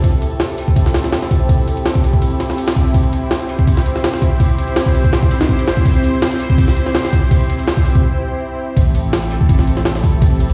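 The jungle drum kit sits up front from the start, a sampler-style set of kick, snare, hi-hat and ride that sounds compressed, pitched up and gritty, with a thumpy kick, a high-tuned snare and a tape-like glow in its studio ambience. This is a dark, nostalgic drum and bass piece at 165 BPM in 4/4, set in A minor with a slight swing on the 16ths. Beneath the beat, a lush unison pad holds sustained chords built on Am7, its detuned sawtooth layers thick and airy with a breathy noise layer, a slow attack, chorus, phaser and a vintage 12-bit sampler grit. After a build-up and a short break at 8.0 seconds, the drop lands at 8.8 seconds, where a saturated sub bass enters up front on a deep, triangle-shaped A1 with a fast attack and long sustain. The whole mix carries vinyl crackle and a large studio reverb, as if played on a big sound system in a bare room, and this short cut from a longer piece ends at 10.5 seconds.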